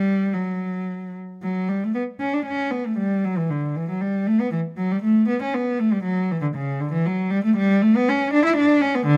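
Flowing and radiant, this short excerpt from a longer baroque-style suite movement features a single cello, bowed and unaccompanied, in D major and 3/4 at around 117 BPM with a rubato feel. The instrument sits close and up front, its warm tone shaped by vibrato, soft attacks and expressive portamento, ranging from C#3 to E4. Light reverb surrounds the playing, and a brief opening phrase gives way at 1.4 seconds to a longer second passage that runs to 9.2 seconds.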